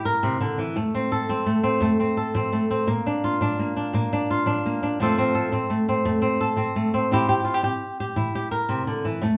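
A straight 12/8 pulse drives this joyful, sunny highlife fragment, with a lone fingerpicked flamenco guitar carrying the whole 9.4 seconds as it moves through C/E, F and Bb before returning to F and C/E. The acoustic guitar has a dark, up-front tone, set in a moderate large studio reverb with a hint of small-room ambience that gives it a live, in-the-room feel.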